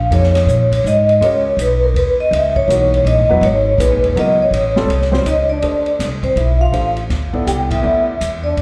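A ringing vibraphone played with medium mallets carries the melody in this searching, intense modal jazz excerpt, its metallic tone shimmering with fast motor vibrato and a slapback echo. Beneath it, a woody, pizzicato upright bass with steel strings sits up front, while a concert grand piano with deep bass and short sustain supplies the accompaniment, also touched by slapback echo. An open acoustic drum kit with dark cymbals, a high-tuned snare and a boomy kick keeps a swung 3/4 at 163 BPM, mixed low behind the band. At 5.3 seconds a cup-muted trombone slips in from the background with a veiled, breathy second line of scooped, soft-attack notes, just as the harmony moves through altered and extended chords toward Dm11. A band accent lands at 7.7 seconds, and the whole performance sounds like a live club gig heard through the venue's PA, with light reverb and small-room ambience.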